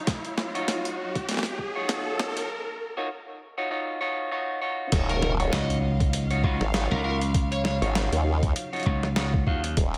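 Lush bowed strings hold an Ebm9 chord in the background, pumping under a sidechain, while an electronic riser builds over a drum fill in this funky, swaggering glitch hop excerpt at 99 BPM with a swung 16th feel in Eb minor. A gritty, pitched-down sampler-style kit of crash, hi-hat and medium-tuned snare joins a thumpy, up-front electronic kick, and clean, scooped electric guitar stabs carry lo-fi 12-bit grit and delay through the break. At 4.9 seconds the drop lands with an impact and a detuned, formant-swept wobble bass thick with chorus and tube saturation. A dark, overdriven lead guitar line with delay follows at 5.1 seconds, and a bright, punchy slap bass comes in at 5.5 seconds.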